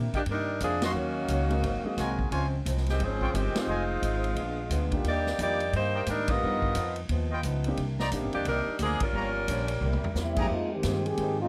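Dramatic and swinging, this big band swing excerpt in C minor at 176 BPM is led by a clear, vibrato-rich saxophone section up front, with soft-attacked trumpet stabs from 0.8 s, a thumpy gut-string pizzicato upright bass, a deep-bassed concert grand piano, a boxy, old-stringed picked guitar in the background, and a drum kit with dark cymbals and a boomy kick that plays a fill at 9.8 s before a mellow trombone section enters at 10.2 s, all within a warm, dark production with light reverb.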